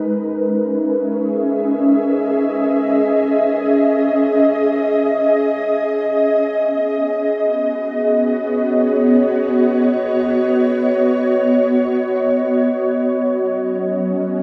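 A cathedral-sized reverb with a 7.5-second decay surrounds this short ambient fragment, placing the sound in a vast, echoing space. A single ethereal pad carries the whole piece alone, sitting up front in the mix with a mellow, airy tone built from detuned sawtooth and triangle voices in unison. Its slow attack and long release let each sustained chord bloom and linger, while ensemble chorus, built-in reverb and a diffuse ambient delay add shimmer around it. Spanning F#3 to E5 and tuned to A4 = 444 Hz, the pad moves from C#m7 to B at 6.5 seconds and settles on F# at 13.2 seconds. The mood is melancholic and reflective, and the passage is cut from a longer piece.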